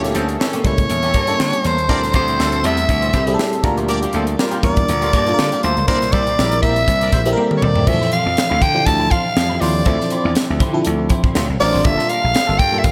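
A raspy, close-miked soprano saxophone carries the urban, nocturnal melody up front from 0.7 s in this polished 1980s jazz-funk pop excerpt with a lightly swung sixteenth-note feel, riding over glassy, bell-like FM electric piano chords treated with phaser, chorus and slapback echo, a twangy clean electric guitar riff in the background, punchy slap bass, and a crisp, airy fusion drum kit whose fill at 7.4 s leads into the second section, while a jazz-style horn section adds a second line until 7.2 s and the mix sits in a lush hall reverb with a big arena sound.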